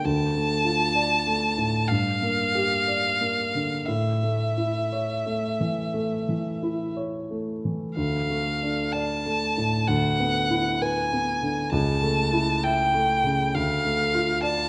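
A single bowed violin sings the melody up front with focused vibrato and a smooth top, staying between E5 and A5 in this solemn, elegiac romantic classical duo in D minor, tuned to A4 = 441 Hz. A grand piano accompanies with a warm, close presence alongside it, moving through Dm, Gm and A before turning to E7/D and A/C# and settling back on Dm at 13.6 s. The slow 4/4 pulse of 57-70 BPM stretches with rubato, and a wet recital hall reverb lends the short cut from a longer piece a lingering, spacious sheen.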